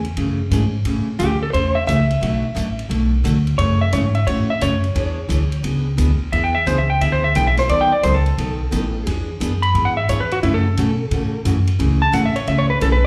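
A dark, clean lap steel sits up front, playing a fingered slide second line from about 1.2 s in this cheerful, down-home western swing excerpt in A major at 176 BPM with a swung eighth-note feel. Beneath it, a woody pizzicato upright bass carries the low end, a full-bodied dreadnought acoustic guitar picks the accompaniment with slapback echo, and a big-band drum kit with a punchy kick and medium-tuned snare swings quietly on hi-hat and ride. The chords move from Amaj7 through Bm7, F#m7 and E9 before landing back on Amaj7, all heard as a live gig through the club's PA with a small-room reverb.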